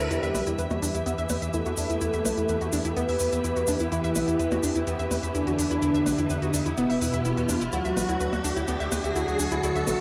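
Melodic techno with a driving, dramatic mood, heard as a short cut from a longer piece that stays in build-up mode throughout, with a riser running the whole way and a filter sweep on the lead. Up front, a fat, nasal analog lead carries the melody with vibrato, analog chorus and analog delay, while an analog pluck spins round, detuned arpeggios through chorus and tape echo. Underneath, a gritty driven synth bass growls with saturated, resonant sawtooth tone, and a big bright polysynth adds a very quiet second line. An evolving wavetable pad holds morphing sustained chords in the background with ensemble chorus and its own reverb, joined by a distant, dark chamber string section bowing with expressive vibrato. A grainy, close tube shaker and smooth electronic hi-hats with percussion blips keep time, as the harmony sits on Em before moving to Dadd9 at 7.7 seconds. The whole mix has the feel of a home cassette recording, with moderate spring reverb and digital ambience.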